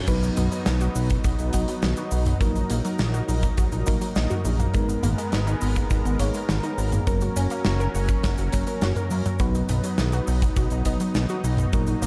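This synthwave excerpt moves at 103 BPM in a straight 4/4, uplifting and nostalgic, cut from a longer piece and opening on a band accent. A lush, detuned sawtooth pad holds sustained chords with chorus and sidechain pumping, while a punchy, warbling unison pluck sits in the background spinning arpeggios through tape echo. A soft, round FM electric piano with a dark, vintage tone adds decaying stabs, treated with chorus and tape echo. Up front, a fat, saturated analog bass mixing sawtooth, square and sine waves pumps with sidechain compression alongside a punchy big-room kick, and a big rock kit with bright cymbals, a medium-tuned snare, toms, hi-hat, crash and cabasa is bathed in gated reverb. The harmony cycles B, D#m/A#, G#madd9 and F# before returning to B, with the kick dropping out at 11.8 seconds.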